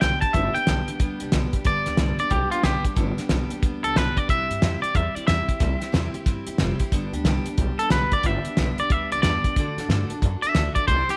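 A swung 4/4 drives this rowdy, rollicking rockabilly excerpt, cut from a longer piece and lasting about 11 seconds. A cloth-damped drum kit sits up front with a thuddy, fat snare, a tight kick and hi-hat, its top end rolled off in a small-room sound. Beneath it, a pizzicato upright bass with gut strings gives a woody, dark, thumpy low end, while a full-bodied jumbo steel-string acoustic guitar is picked underneath as accompaniment. Carrying the melody, a bright, clean, twangy electric guitar is also placed up front, its picked lines trailed by tape echo. The harmony moves from G to C at 4.3 seconds, back to G at 6.9 seconds and on to D at 9.6 seconds, all within a light reverb.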